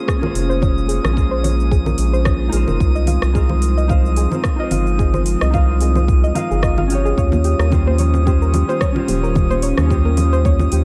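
A dark, warm mix with light reverb and a digital ambience frames this relaxed sunset chillout excerpt, gently swung on the sixteenths and moving through Bbm9, Ab6 and Eb13. A round, evolving analog bass sits up front beneath a deep, layered electronic kick and a smooth R&B kit of metallic hats, rim click and shaker. A clean, fingered electric guitar with delay and shimmer reverb, a breathy chorused pad in the background and a glassy texture of drifting overtones hold the harmony, while a gentle pluck plays arpeggios under a filter sweep and bright acoustic congas from soft hands join quietly in the background at 7.3 s.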